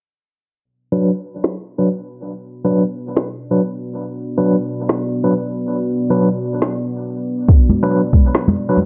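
A barky, gritty tine electric piano with fast tremolo and dub echo stabs in from 0.9 seconds in this dark, brooding deep dubstep excerpt at 139 BPM in B minor, riding a swung half-time feel as a filter sweep moves over it and over a moody, detuned sawtooth ambient pad that holds sustained chords from 2.5 seconds, while a deep house kit brings a woody snare and smooth hi-hats, and near the close a deep electronic kick enters at 7.5 seconds ahead of bright, dry congas, the whole mix soaked in echo.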